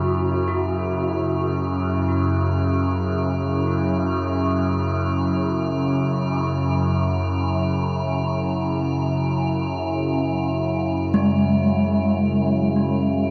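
Cavernous and dark, this free-time dark ambient drone fragment, tuned to A4 = 435 Hz and resting on a C#m/F# chord, sets a resonant, up-front overtone-sweeping drone with chorus and phaser beneath ringing, shimmering bronze gamelan-type metallophone arpeggios struck with a wooden mallet and touched with delay, while an eerie, inharmonic metallic drone hovers quietly above, all through the full 13.3 seconds inside a huge, dark reverb.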